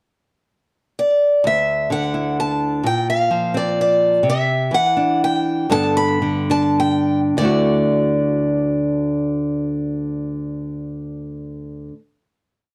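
A picked steel-string acoustic guitar opens with a pickup at 1.0 seconds, its woody, boxy parlour tone and old strings carrying a motif-based, song-like melody up front with a slapback echo. At 1.4 seconds a bright, small-sounding nylon-string guitar joins with sparse fingerpicked accompaniment through Dadd9, Bbsus2, Cadd9 and Gadd9 in D mixolydian, in 3/4 between 97 and 129 BPM, slowing from 4.2 seconds. This nostalgic, hopeful acoustic folk piece comes to rest on a final Dadd9 from 7.4 seconds, in a dry, close 1970s-style studio sound with light reverb.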